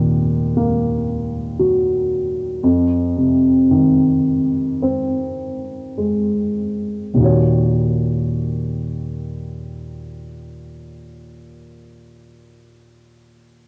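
Folk piece in Eb dorian at a slow 48-60 BPM, where a lone dark, mellow baby grand carries a melancholic, heartbroken melody from Eb2 to Db5 with a boxy, short-sustained tone sitting up front in a dry, close 1970s-style studio sound with small room reverb, slowing down through its first 7.2 seconds as the chords move from Ebm to Fm7 and settle on Ebm7 before this cut from a longer piece ends at 13.7 seconds.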